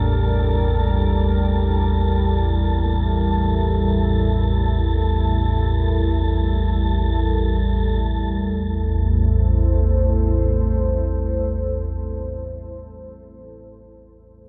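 Unsettling and ominous, this dark ambient excerpt drifts in free time in A phrygian, cut from a longer piece. A deep rumbling drone anchors the low end, up front and shadowy, with a slow attack, long release, built-in reverb and a subtle chorus. Above it, a moody, warbling pad with a detuned, vintage character holds sustained chords, thickened by a sub octave and treated with chorus and its own reverb. An airy, breathy wind-like noise texture sits high and mellow in the background until it stops at 8.0 seconds, when the harmony moves from Gm/A to Am. The huge 8.8-second reverb and dark, warm production let the drone stop at 12.0 seconds and the pad ring on to 12.5 seconds.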